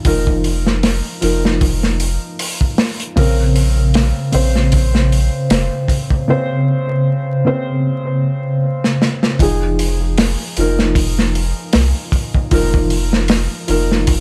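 Trip hop at 77 BPM in F minor with a light 16th-note swing, this smoky, dark excerpt pairs a felt-muted upright piano, boxy and intimate with audible action noise and colored by harmonic tremolo, 12-bit sampler grit and tape echo, with a saturated, gritty breakbeat kit of hi-hat, tight kick and medium-tuned snare with a rolled-off top, all over a deep, round dub sub bass, as the chords move from Fm7 to Bbmadd9 and back to Fm7 in a dry, vinyl-crackled sound, with a break at 6.3 seconds and a drum fill at 8.8 seconds.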